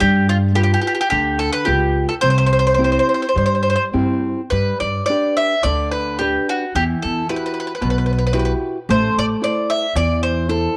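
A bowl-back mandolin carries the melody up front, its picked double strings giving a warm, sunny voice with a tape-worn cassette character in this short excerpt from an Italian folk serenade. The romantic mood moves in a loose, rubato 4/4 at roughly 102-113 BPM, beginning in C major and shifting to G major at 4.5 s. Beneath it, a nylon-string guitar fingerpicks a dark, small-sounding accompaniment through changes from G7 and C to G, Emadd9 and Am. An upright bass, played pizzicato on steel strings, sits up front with a woody, warm tone and stops at 10.7 s, just before the others close at 10.8 s. The whole performance has the intimate feel of a home cassette recording, with moderate spring reverb and a small room ambience.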